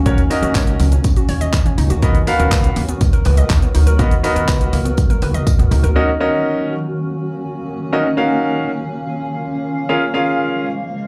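A clear, up-front concert grand piano carries this driving, confident dance-pop excerpt in Eb minor at 122 BPM, its polished tone and audible action noise pumping with the sidechain over a dark, cloudy granular pad that holds sustained chords moving from Ebm7 to Bmaj7 and later Bbm7. Through the first half a punchy electronic pop kit with handclaps, shaker and toms, a woody, growly pizzicato upright bass, a hollow, bouncy square-wave pluck spinning chorused, delayed arpeggios and a jingly tambourine in the background drive things forward, closing with a drum fill from 5.0 to 6.0 seconds. After 6.0 seconds only the piano and pad continue, heard through a live club PA with light reverb.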